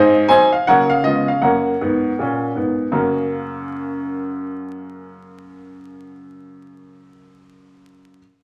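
A vinyl crackle and the wet bloom of a large studio's reverb frame this short excerpt of exuberant, swinging stride piano jazz. A lone upright piano carries everything at a brisk 158 BPM in 4/4, its eighth notes swung, and it plays from the start to 8.2 s. Its tone is woody, with short sustain, and it sits up front in the mix, spanning from F#2 up to G#5 in F# major. The opening harmony moves from G#7 through F#/C# and C#7 to settle on F# within the first couple of seconds. One passage gives way to a contrasting one at 2.9 s, which runs to 6.0 s before the excerpt closes.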